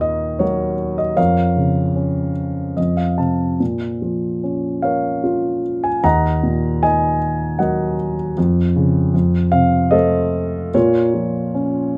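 Dark and melancholic, this lyrical classical solo piano excerpt in 3/4 with uneven, rubato beats features a mellow, intimate grand piano, up front with audible action noise and a vintage character under light reverb, ranging from Eb2 to Bb5 across chords such as Ebm, F7 and Bbm, with a brief fill at 2.4 seconds, all cut from a longer piece.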